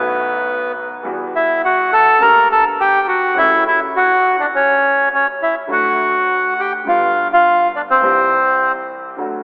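Passionate and playful, this short tango fragment unfolds with a rubato feel. A reedy bandoneon carries the melody up front from the start, stopping at 8.7 seconds, while a concert grand piano with deep bass, smooth tone and short sustain accompanies well beneath it, vintage in color, until 9.4 seconds. A lush hall reverb bathes the rough home-demo mix, which has a telephone-like sound, and the harmony moves from B7 through minor added-ninth chords to a closing C.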